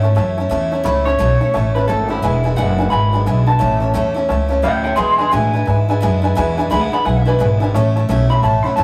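Rockabilly with a rowdy, rollicking swing, this short excerpt comes from a longer piece and moves between A and E7 chords. An upright bass sits up front, its gut strings plucked with a thumpy, woody tone that anchors the bottom. A picked steel-string acoustic guitar adds a bright, full-bodied accompaniment with audible finger squeak, while a dark upright piano, mellow and slightly detuned, fills in behind with its action noise audible. At 1.1 seconds an electric guitar enters through a small old amp, taking the melody with a twangy, slightly broken-up bite. The sound is a rough rehearsal-room recording with tube saturation and a moderate small-room reverb that keeps the band close and lively.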